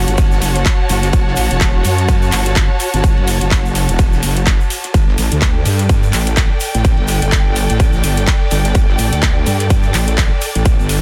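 A heavy, saturated wobble bass with a detuned sawtooth edge and sidechain pumping anchors this gritty, aggressive 126 BPM bass house excerpt in swung 4/4, driven by a punchy, up-front electronic kick and a big-room dance kit's handclaps and metallic hi-hats, while a dark, lush bowed string section pumps over F#m7 and Gsus2, and a very quiet cloth-damped kit with a fat snare and dark ride sits alongside a distant, grainy tube shaker in a small room under a dense, heavily limited master.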